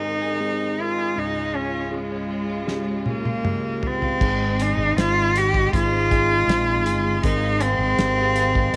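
The recording sits in a small room with light reverb, giving this short excerpt from a longer emotional, hopeful pop ballad an intimate, close feel, tuned to A4 = 435 Hz. Up front, a single bowed cello carries the melody with a rich, focused tone and vibrato, while a bell-like tine electric piano treated with phaser plays the accompaniment. Behind them, a lush studio string section holds sustained chords with expressive vibrato and portamento, and a clean, compressed electric guitar recorded direct picks arpeggios in the background. A damped 70s drum kit with dry, dark cymbals and a tight kick enters at 2.7 seconds with a fill that leads into the second section. At 4.2 seconds a bright fretless electric bass joins, settling the low end under the harmony as it returns to the home chord.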